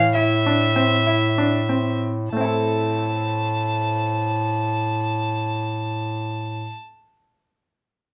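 This short excerpt of contemporary chamber music sits in a moderate studio reverb. The mood is pensive yet urgent, moving in free time within an uneven meter and staying in A minor. It slows over its first 2.3 seconds before a second passage takes over. A single bowed violin, up front, carries the melody between E5 and A5 with a rich, nasal, earthy tone, light vibrato and a smooth top. Beneath it, a solo bass clarinet holds the bass on A2 in a classical style, warm, roomy and distant in character while still up front. A bright grand piano, brilliant and somewhat worn with short sustain, plays arpeggios from A3 to A4 until about 6.9 seconds.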